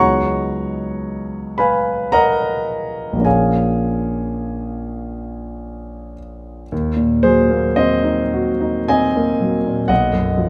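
Rubato in a slow 3/4 at 50-62 BPM, this hazy, nocturnal impressionist solo piano piece in Eb minor drifts through lush chords such as Db9sus4, Bbm7 and Ebm6 before settling on B(#11) at 9.9 seconds, in a short passage cut from a longer work. The concert grand sounds intimate and up front, with deep bass, a smooth, vintage tone and audible action noise. It sits in a wet recital hall reverb, and a new section begins at 6.7 seconds.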